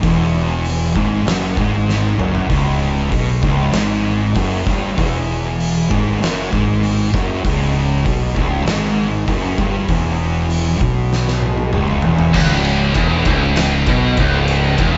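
A straight 4/4 stoner and doom metal groove, ominous and sludgy, sets two thick fuzz guitars on picked riffs, one dark and up front and the other tucked into the background, over a growly, overdriven fingered bass and an oversized low-tuned acoustic kit with a fat snare, punchy kick and dark cymbals in a pumping stone room, with drum fills at 1.9 and 11.1 seconds, before a bright, double-tracked high-gain guitar takes up the riff at 12.3 seconds in this fragment cut from a longer piece.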